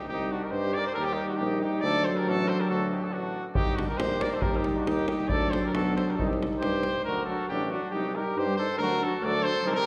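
A straight 2/4 pulse at 138 BPM drives this short Balkan brass band passage, bittersweet yet fiery, over a minor-leaning cycle of Cm, Eb and D chords. The trumpet carries the melody up front, its mellow tone set back in a roomy space. A clear, punchy flugelhorn plays a second line beneath it in classical style. Two euphoniums fill out the accompaniment: one close-miked with a light vibrato, the other warm and soft-attacked in the background. A tuba with a vintage colour holds the bass, and a deep, dry davul sits up front from 3.6 to 6.9 seconds. A generous church-like reverb surrounds the brass, and the piece shifts into a new section near its end.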